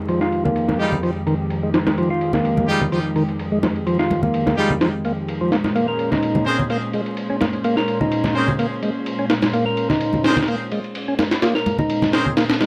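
Breakbeat with an energetic, funky feel and a light swing, heard in a short excerpt dusted with vinyl crackle. A gritty, pitched-up sampler drum kit with a high-tuned snare and ride cymbal sits up front beside a fat, lightly overdriven tonewheel organ riff with key click and percussion, while a brilliant horn section fires octave-doubled stabs with sampler grit from 0.8 seconds. Ringing congas played with soft hands, a lush detuned pad sustaining Fm9 then Bbm9, and a barely audible downlifter in the opening 2.0 seconds fill out the sound.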